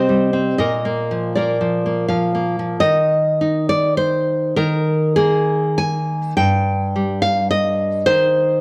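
A romantic piece for solo classical guitar, this short excerpt is cut from a longer work and carries an intimate, wistful mood. It moves in 3/4 with a rubato feel, its tempo drifting between 78 and 110 BPM in Eb major. The nylon-string guitar plays alone throughout, fingerpicked and up front, with a dark, full-bodied tone that spans from G2 to Ab5. The harmony opens on Cm and Bb before a second section begins at 2.8 seconds, passing through chordless stretches and an Ebsus4, then settling on Eb5 at 8.1 seconds. Close, detailed microphones capture the instrument in a moderate recital hall reverb.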